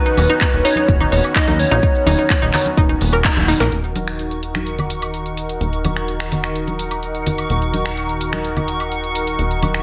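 A light reverb gives this progressive house excerpt a bittersweet, dreamy glow in a straight 4/4 feel. A lush, detuned supersaw pad holds sustained chords throughout, pumping under sidechain compression and shaded by a low-pass filter, with a filter sweep running through the second half. The opening pairs a catchy, mellow unison lead, its melody trailed by tape echo until 3.2 s, with a round, chorused analog pluck spinning arpeggios through the same echo, while a deep electronic kick drives until 3.3 s, just after a band accent at 3.2 s and ahead of a drum fill at 3.5 s. A house kit of finger snaps, handclaps, hi-hat, shaker and a punchy snare keeps going beneath a funky, wave-folded analog bass that pumps alongside bright, close and dry congas and woodblock. At 4.3 s a reversed, granular texture swells in high above the mix, pumping and bathed in its own reverb.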